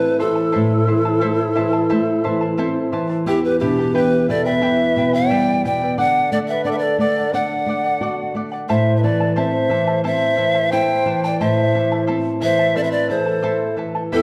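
This Andean folk excerpt, cut from a longer piece, has an earthy, melancholic mood and a straight, unhurried pulse in four. A polished, bright pan flute carries the melody up front, its close-miked, breathy tone shaped by gentle vibrato, a soft attack and a touch of slapback echo. Beneath it, a large wooden quena plays a second line through the whole passage, end-blown and tongued, with an airy chiff and its own vibrato. The charango fingerpicks a shimmering accompaniment on its doubled strings, some sounding in octaves, while a flamenco guitar, also up front, fingerpicks the lower harmony with audible finger squeak as the chords move from Am to Em to D and back to Am. All four parts play from 0.0 to 14.2 seconds inside a wet recital hall reverb, and the production leans dark and warm.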